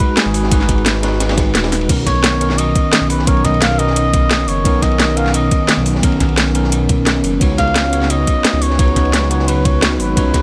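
Liquid drum and bass, lush and uplifting, cut from a longer piece, where a breathy cup-muted trumpet sings a veiled jazz melody over bell-like electric piano accompaniment with phaser and delay, a very quiet ethereal FM pad, a knocking overdriven electronic kick, a garage kit with cracking snare and metallic hats, a gritty, rolled-off breakbeat kit with dark cymbals, and a deep, rumbling detuned saw bass that enters at 0.3 s, all inside a small room ambience.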